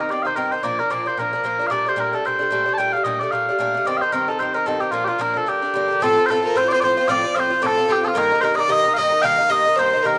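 Driving and wild, this Celtic reel excerpt sets sweet, mellow small bagpipes up front on a continuous, vibrato-laced melody over a picked Irish bouzouki with metallic double strings, before a rich, earthy fiddle joins at 6.0 s with an airy bowed second line, all in a swung 4/4 and bathed in a moderate plate reverb.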